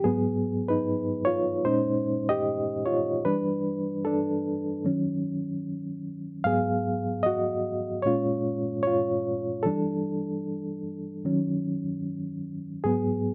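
A dark production with a moderate studio ambience frames this short R&B passage, cut from a longer piece. A lone reed electric piano carries everything from 0.0 to 13.3 seconds, its tone reedy and clean, sitting direct and up front in the mix. A fast tremolo shimmers across its notes, which range from G#2 up to E#5. The feel is sultry and late-night, with a lazy swing on the sixteenths in 4/4. The harmony circles through G#m7, A#m7, Em7 and D#m7, then repeats the same four chords, all tuned slightly sharp to A4 = 441 Hz.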